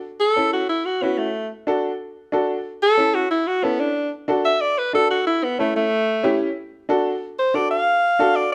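A clear, up-front alto saxophone carries the melody from 0.2 s with a light vibrato and a poppy solo voice, joined almost at once by an upright piano whose woody, worn, slightly detuned tone and short sustain give the accompaniment an open, homely character. This sunny, danceable Latin cut moves at a brisk 184 BPM in straight 4/4 in D major, its harmony rocking between A and D with a brief A7 before settling back on D. A moderate large-studio reverb adds space around the pair in this short excerpt from a longer piece.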